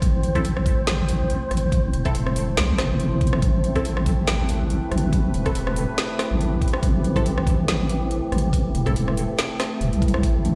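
A deep, chorused wobble bass sits up front in this cavernous, brooding deep dubstep excerpt in A minor at 141 BPM with a swung half-time feel, joined by a knocking electronic kick, an overdriven garage kit with woody snare and metallic hats, a dark evolving ambient pad, an airy wind-like noise texture, and a muted, phased dub chord stab with cassette grit and dub echo from 0.4 to 9.0 seconds, before distant, high-tuned congas ring out briefly at 10.4 seconds, all heard through a big sound system in a bare stone room.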